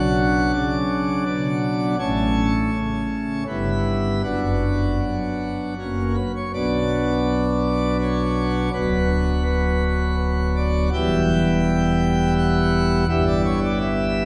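A solo pipe organ on full plenum, brilliant with mixtures and voiced in a romantic manner, carries this grave, dark classical chorale-style passage in a rubato 3/4, spanning from a deep D1 to G5 and shifting into a second section at 6.5 seconds, all cut from a longer piece and heard from further back in a church whose wet 2.7-second reverberation lingers around every chord.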